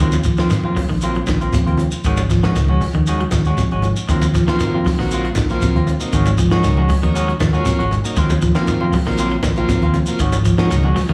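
A funky, hypnotic afrobeat groove at 118 BPM in Eb dorian opens with a twangy, slightly broken-up electric guitar picking arpeggios and a dark, clean semi-hollow guitar playing stabs, both with slapback echo, over a round, punchy hollow-body bass, a compact cocktail kit with a high-tuned snare and rolled-off top, ringing congas in the background and a grainy shekere, as Ebm69 and Ab7sus4 alternate and a buzzy overdriven combo organ joins at 4.5 seconds, all heard like a live gig through a club PA in a small room.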